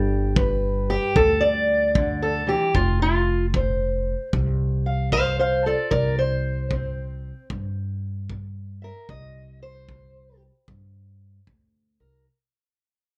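A gritty, rollicking acoustic country blues fragment with light reverb, cut from a longer piece and fading throughout its 12.3 seconds, where a dark, boxy fingerpicked parlour steel-string guitar with slapback echo takes the lead up front over woody pizzicato upright bass and a punchy, rolled-off kick drum played with brushes that enters at 0.4 seconds, all in a swung 4/4 feel moving through G, F5 and C5 chords.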